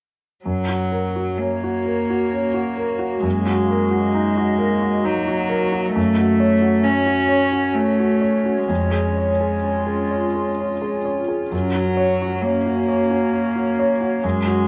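A single bowed cello opens this tender, hopeful excerpt of neoclassical piano and strings at 0.4 s, its soft attack and pure, floating sul tasto tone sitting close while feeling distant. At 0.5 s a concert grand piano joins as accompaniment, intimate and natural, with audible action noise and deep bass reaching down into its low register. The cello carries a second line alongside it. A warbling, nostalgic pad arrives at 1.3 s, holding sustained chords in a mellow, lo-fi haze of detuned square, triangle and sawtooth tones with a slow attack and long release, colored by chorus, phaser and its own reverb. The music moves in a rubato three-beat pulse through a gentle harmonic arc that passes through a minor-tinged shade before settling back home. A moderate echo chamber gives the whole ensemble a soft, enveloping space.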